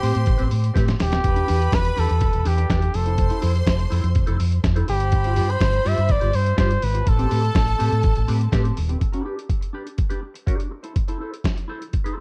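Disco with a danceable, driving pulse, cut from a longer piece: a clear, punchy flugelhorn carries the melody with scooped notes and tape echo, while a lush, bowed string section plays a second line above a round, up-front fingered bass. A clean semi-hollow electric guitar with phaser supplies accompaniment, and a muffled, pitched-down sampler-style drum kit with a thumpy kick adds a short fill at 0.8 seconds. The production is dark and dry, and after the horn, strings and bass stop near 9 seconds, only the guitar and drums remain to the end at 12.2 seconds.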